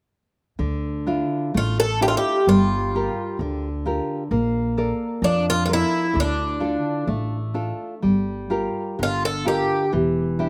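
A passionate, mournful fado-style ballad in D minor at a rubato 64 BPM in 2/4, where a full-bodied, fingerpicked nylon-string guitar and a woody, thumpy pizzicato upright bass enter at 0.6 seconds over chords moving from Dmadd9 through Gm7 and Bbmaj7, before a boxy, shimmering, octave-doubled picked twelve-string guitar carries the swinging melody up front from 1.6 seconds, all captured dry and outdoors in this short cut from a longer piece.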